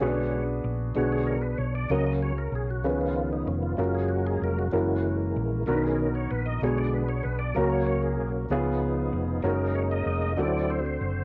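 A tonewheel organ takes the solo through this 11.2-second cut from a longer slow gospel piece, its clear tone carrying key click, chorus vibrato and a fast rotary speaker over sustained chords at 64 BPM in a straight 6/8 feel in F# major. A dark concert grand piano with a vintage, intimate sound, audible action noise and deep bass plays mellow accompaniment, while a hollow-body short-scale fingered electric bass adds a round, punchy line through transformer saturation. The harmony moves from Bm6 through C#7 and F#maj7 to a closing D7, and the home cassette recording sits in moderate studio reverb, the mood reverent yet jubilant.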